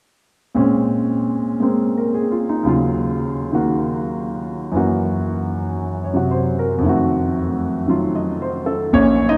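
This solo jazz excerpt has a moody, late-night feel, carried by a single grand piano with a swung eighth-note lilt in 4/4. The piano sounds smooth and vintage, sitting up front in the mix as it ranges from deep bass notes up into the middle of the keyboard. It plays from 0.5 s to 9.4 s, moving through a harmonic progression of Bbm9, Ebm9, Gb7 and F7b9. A long, wet cathedral reverb surrounds the instrument, giving the impression of a church or concert hall. Lush extended chords and the resonant space together create an intimate yet spacious atmosphere.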